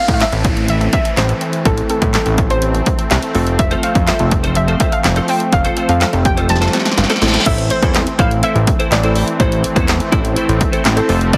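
The drum machine drives a straight 4/4 at 124 BPM, its punchy kick and snare sitting up front with handclaps, hi-hat and crash cymbal, while a fat, detuned analog bass pumps underneath in A minor. This energetic, bittersweet dance-pop passage is cut from a longer piece, and a soft, round pluck carries the melody over a smooth sawtooth pad and chorused analog keys that both breathe with sidechain pumping in the background. A very quiet, lush unison pluck spins arpeggios until 7.3 s, and a downlifter and reverse cymbal sweep through the opening before a drum fill and reverse cymbal lead into the second section at 7.5 s. A clean, direct-recorded electric guitar enters at 3.6 s with a picked riff under ensemble chorus as the chords move from Am to F and back to Am. A synth keys fill closes the passage, all set in light reverb with a heavily compressed, radio-like sheen.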